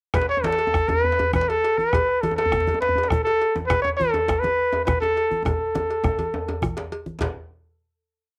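This short, festive West African drum ensemble piece opens at 0.1 s with a warm, jazz-inflected trumpet up front, playing solo call phrases built on a short motif with a light vibrato and a cassette-tape colour. Beneath it, a round bombo and low-tuned, thick-skinned congas hold evenly spread patterns in a straight 12/8 feel. A deep, compressed and saturated djembe carries the lead drum phrases. A second, medium-tuned djembe with metal rattles sits in the background alongside a metallic cowbell bell pattern. The bombo, congas, second djembe and cowbell are close and dry, while the congas and both djembes are played with soft hands. A drum fill begins at 5.5 s, and the whole piece closes on a final hit at 7.2 s, with the powerful ensemble heard in a small room on a homemade cassette recording.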